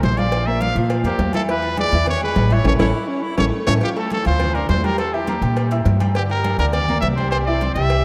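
This driving, danceable salsa clip in D minor, cut from a longer piece, opens with the whole band at once at a brisk 206 BPM in straight 4/4. A punchy, vibrato-laden trumpet carries the melody up front in a pop style. A bright, brilliant upright piano with long sustain fills in the harmony, while a woody, thumpy pizzicato upright bass sits prominently beneath. Congas with a thick-skinned tone, a tight high-tuned cowbell, and ringing metal-shelled timbales and agogo bells stay in the background. A band accent arrives at 2.7 seconds, with a drum fill and a faint, breathy, distant baritone saxophone slipping in briefly before the second section begins at 3.8 seconds. The chords move from Bbsus2 through E7 and A to Dm, Edim, Gm and C, all set in a vast, echoing cathedral-like space.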